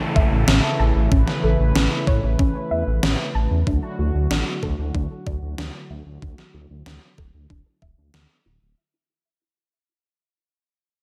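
A brassy analog pad pumping with chorus and a soft, round plucked arpeggio trailing tape echo open this nostalgic, uplifting synthwave piece beside a very quiet downlifter, joined at 0.2 seconds by a dark, rumbling detuned saw bass and an overdriven, thumpy electronic kick, then at 0.5 seconds by an up-front gated-reverb snare, as filter sweeps move through the pad and arpeggio over a change from A to Dadd9 and the passage fades out in light reverb.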